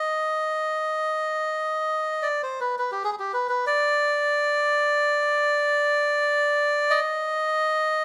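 A solo melodica opens this short fragment of a Caucasian folk lament, its reedy, breathy voice carrying the whole piece in free time. The mood is solemn and mournful, with the melody moving within the range of G4 to Eb5 across the full 8.0 seconds. Close, detailed microphones place the instrument up front, catching the nasal edge and airy quality of its plastic case. A light reverb gives the sound a little space around it. The tuning sits slightly below standard pitch, at A4 = 439 Hz, and the passage is cut from a longer piece.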